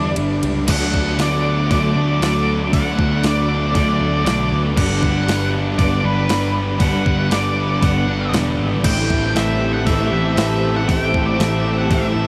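Over a straight 4/4 pulse, a crisp 8-bit digital drum machine with a thumpy kick, medium-tuned snare, hi-hat, ride and crash cymbals drives this blissful, dreamy shoegaze and dream pop cut, taken from a longer piece and soaked in a huge ambient reverb. An octave-fuzz lead guitar carries the melody with distortion and tape echo, while a very quiet, twangy twelve-string electric guitar picks bright, compressed arpeggios beneath it. In the background, a dark fuzz guitar with lush chorus, a crunchy overdriven guitar treated with reverse reverb, and a biting, double-tracked overdriven guitar entering at 0.7 seconds stack up riffs into a dense wall. A vintage foam-muted electric bass anchors the low end with a round, amped tone. The harmony moves from Gadd9 through D6 and Gmaj7 to Am7, and at 8.8 seconds a hollow, flute-like pad with chorus and ring modulation rises in with airy sustained chords.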